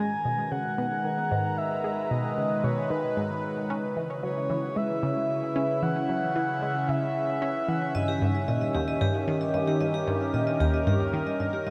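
A resonant, wave-folded pad sweeps up front through this expansive, cosmic stretch of sequencer-driven space music at 113 BPM in G# minor, alongside a round, nasal analog pluck riff coloured by phaser and cassette tape, a breathy flute-like synth lead carrying the melody until 7.9 s, and then a metallic vibraphone with hard mallets ringing out arpeggios, the whole recording set inside a huge, wet ambient reverb.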